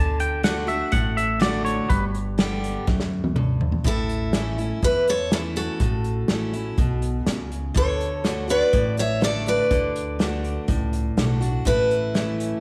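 A bright, full-bodied picked steel-string acoustic guitar carries the melody from 3.9 seconds, leading this sunny, heartfelt slice of honky-tonk and classic country, cut from a longer piece, at 123 BPM in a straight 4/4 in A mixolydian. Before it arrives, a twangy, scooped, compressed electric guitar plays a clean second line through a tape echo until 2.0 seconds, and a drum fill at 2.9 seconds leads into the melody. Underneath, a second dreadnought acoustic guitar sits up front in accompaniment, its picking marked by audible finger squeak. A woody, thumpy upright bass on gut strings and an unplugged drum kit played with bundle sticks, with a tight kick and medium-tuned snare, drive the groove through D, G, A and D chords before returning to A. A moderate echo chamber reverb wraps the ensemble in a homespun, old-time glow.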